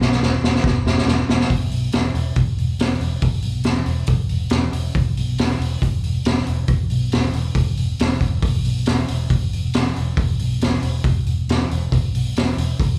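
A raw garage drum fill opens this smoky, heavy blues rock excerpt with a southern rock edge, running through the first 1.5 seconds before the groove settles in. The tempo sits at 138 BPM in a straight 4/4, and the whole fragment is cut from a longer piece and tuned slightly under standard pitch, at A4 = 439 Hz. The acoustic kit sits up front and mid-forward, with a high-tuned snare, a boomy kick and hi-hat, all saturated and gritty with a rolled-off top end. A vintage fingered electric bass plays throughout, down in its lowest register between E1 and B1, sounding dark, round and foam-muted through an amp, and sitting a little below the drums in the mix. The pair are heard as a live gig through the venue's PA, wrapped in club ambience and a moderate club reverb, with the drums stopping at 12.9 seconds just before the bass at 13.0.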